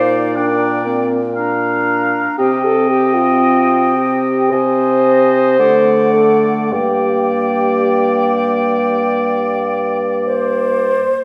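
Set in a slow, rubato 4/4 that drifts between 48 and 60 BPM, this brief fragment of a romantic wind-quintet movement in G minor carries an elegiac, yearning mood. An airy, hollow silver flute with vibrato sings the melody, while a clear, slightly distant oboe with light vibrato shapes a second line. A smooth-topped French horn and a mellow, roomy clarinet fill in the accompaniment, and an up-front bassoon anchors the bass. The harmony moves from Gm/Bb through Cm and Ab/C to a D7 that resolves back to Gm. The horn drops out at 10.2 s, and the flute holds on until 11.2 s. The whole ensemble sits in a reverberant recital hall whose 1.8-second decay lends the blend a gentle, church-like glow.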